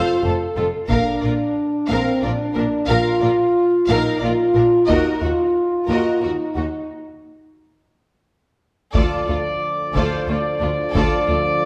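Violins, violas and a warm French horn section open this epic, dramatic orchestral film cue in 3/4, joined within the first second by rich cellos and double basses and close, dry taiko struck with heavy sticks, all set in a wet scoring-stage reverb, before a break at 6.9 s gives way at 9.0 s to clear trumpet stabs and dark, roomy trombones.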